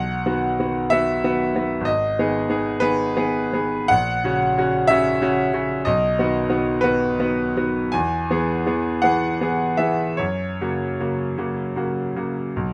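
Warm and hopeful, this short cut from a longer romantic character piece for solo piano moves in 6/8 with a free, rubato feel. A bright grand piano, brilliant and smooth with a vintage tone and long sustain, sits up front in a close, detailed recording with little reverb, spanning G#1 to G#5. The harmony travels from B through G#m and F#/A# back to B, then to E at 7.9 seconds and F# at 10.2 seconds.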